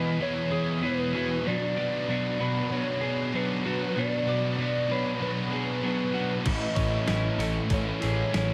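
A straight 4/4 pulse at 96 BPM carries this dreamy, blissful shoegaze and dream pop excerpt, where a clean electric guitar's lush chorused arpeggios, a crunchy overdriven guitar with reverse reverb, a bright double-tracked distorted guitar and a thick fuzz guitar riff over Emaj7, Bm and Amaj7 beneath a pure, warbling sine lead melody with tremolo and delay, until an overdriven fuzz bass and a thumpy, detuned 8-bit drum machine, sounding as if it were captured in a large room, arrive at 6.5 seconds.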